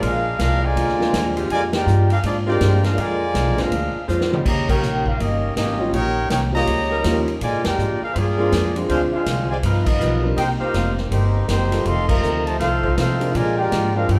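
Brassy and energetic, this big band swing excerpt in Bb major moves at 162 BPM as a clear, close-miked trumpet section carries the melody with light vibrato and plate reverb over a woody, dark pizzicato upright bass up front, a punchy swinging drum kit with a drum fill at 4.1 seconds, a warm baby grand piano entering at 1.0 second, and a veiled cup-muted trombone section, clean hollow-body jazz guitar and smooth saxophone section chords sitting in the background, all heard from further back in a large studio with band accents punctuating the chord changes.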